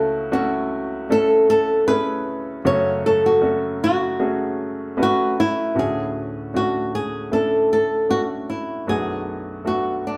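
Pop in F# minor at a slow 77 BPM, this short excerpt from a longer piece feels emotional and melancholic. A fingerpicked flamenco guitar carries the melody between D4 and C#5 throughout, its acoustic tone sitting up front with audible finger squeak. A clear baby grand piano plays the accompaniment from B1 to B4, polished and present, placed beneath the guitar in level. The harmony moves from F#m7/C# to F#m, then shifts at 5.8 seconds into a new section on Dmaj7 before settling on Bm7 at 8.9 seconds. The pair sounds like a band playing live in one room, wrapped in a stone room reverb that lends a damp, lingering air.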